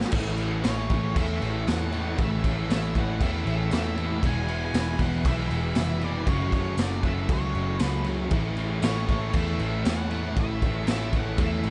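Wistful and blissful, this shoegaze and dream pop rock fragment moves at 117 BPM in a straight 4/4 over A, E and F#m7, driven by a raw garage drum kit in a small, pumping room with a punchy kick and gritty saturation, under a round, foam-muted picked bass. A wall of riffing guitars sits behind: a crunchy overdriven part washed in reverse reverb, a bright double-tracked overdriven guitar and a very quiet thick fuzz guitar. From 0.6 seconds a dark octave-fuzz lead carries the melody through tape echo, while a silky, chorused analog string pad holds sustained chords and a jingly tambourine sits close and dry in the background of a dark, warm, mostly dry mix.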